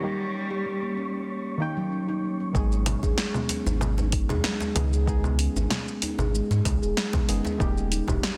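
A straight 4/4 groove at 95 BPM takes hold at 2.5 s in this warm, hypnotic organic downtempo excerpt, as an overdriven electronic kick, an up-front deep house kit of congas, hi-hat, shaker and punchy snare, a round sine sub bass with sidechain pumping and, soon after, a hard-handed acoustic djembe join the ringing steel tongue drum arpeggios, dark chorused chord stabs with delay moving from D# to G#m and back, a brief distant bowed cello note with vibrato, and an airy wind-like noise texture that stops at 2.6 s, set in light reverb under a dense, heavily limited master.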